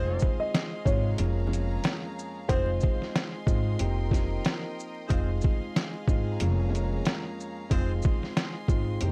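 Dry and gritty with vinyl crackle and transformer saturation, this excerpt of boom-bap hip-hop in F minor moves at 92 BPM with a swung, reflective feel over a Fm7 vamp that passes through Bbm7/F and Cm7/F. A pitched-down, muffled sampler-style kit with a thumpy kick, snare, shaker and hi-hat enters at 0.2 s, up front beside a woody pizzicato upright bass thickened by tube saturation, while a boxy upright piano with audible action noise plays the accompaniment on cassette tape. A dark, slightly detuned second piano carries a brief tape-echoed melody until 3.3 s, soft-attack bowed strings float above, and a loose, jazz-style horn section adds echoed stabs in the background until 7.9 s.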